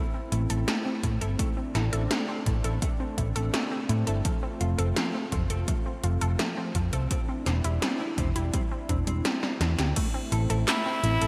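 A bright, 1980s-style digital production bathed in a lush hall reverb frames this nocturnal, cinematic synthwave excerpt in A minor at 84 BPM, moving from Am through F and Cadd9/E back to Am. A detuned sawtooth pad with sidechain pumping sustains chords beneath a bright, wave-folded unison pluck playing delayed arpeggios, while a round, amped picked bass sits up front alongside a punchy, tape-warm electronic kick and 80s pad drums with a gated snare, metallic hi-hats, handclaps and crash cymbal, capped by a fill from 9.4 to 10.0 seconds. A clean, compressed electric guitar riffs in the background through lush chorus and delay, and at 10.7 seconds a raspy, gritty tenor saxophone enters up front on a forceful E4 with vibrato.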